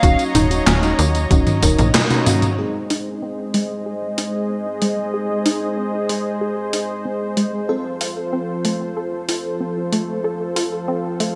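Bathed in a wet hall reverb, this bright, 1980s-style digital production has a moody, nostalgic glow, a short cut from a longer synthwave piece in straight 4/4. Up front, a smooth, detuned supersaw holds sustained chords that pump under sidechain compression through a low-pass filter. In the background, a round analog pluck spins arpeggios with chorus, digital delay and a gritty 12-bit sampler edge, while a dark, dreamy FM electric piano layered with a soft pad adds chorused, delayed stabs. A gated 80s drum machine, tape-colored and sampler-style, sits prominently with gated-reverb snare, handclaps, hi-hat, tambourine and toms. At the start it is joined by a thumpy electronic kick and a tight, punchy, nasal sequencer bass, both of which drop out by 1.9 s. A drum fill and a full-band accent lead into a new section at 2.6 s, where the harmony moves from Ebm7 to Ab and then to F at 7.7 s.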